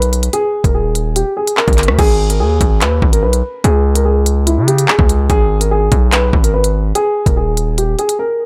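A dark, mellow concert grand piano leads this cold, tense drill excerpt at 145 BPM in a half-time feel, its smooth, vintage, low-pass-filtered melody moving between E4 and B4 in G# harmonic minor over chords that shift from D# to G#m, C#5 and D#5. Beneath it, a heavy, saturated 808-style bass with a noise layer and fast attack pushes aggressively up front, while an electronic drum kit adds a knocking kick, crisp hi-hats, handclaps, rim clicks and crash cymbal in a digital ambience. The drums cut out at 8.2 seconds, just before the piano finishes at 8.5.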